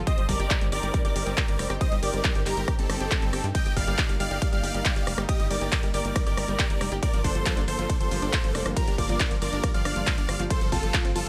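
A huge, lush supersaw chord melody with phaser and digital delay leads this bittersweet, driving uplifting trance excerpt in G minor at 138 BPM, moving through Cm, Eb, Gm7 and Fadd9 over a punchy, up-front electronic kick that runs to 11.0 seconds and a layered big-room kit of handclaps, hi-hat, ride cymbal and rim click. A tight, nasal sequencer bass drives underneath, while a catchy square-wave unison lead with tape echo, a round, warbling analog pluck playing arpeggios and a silky string-like pad with ensemble chorus sit further back, and every part except the drums breathes with sidechain pumping. A digital ambience surrounds the whole mix.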